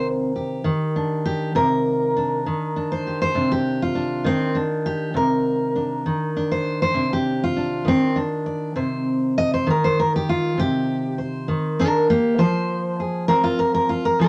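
Acoustic country blues in C minor, this mournful, smoky excerpt moves at a slow 66 BPM in a straight 12/8 feel. A fingerpicked steel-string acoustic guitar plays alone and up front throughout, its jumbo body giving a dark, woody, full-bodied tone with the dull edge of old strings, ranging from C3 to Eb5. It rests on a Cm9 chord before shifting to Fm at 12.4 seconds, set in a moderate studio reverb.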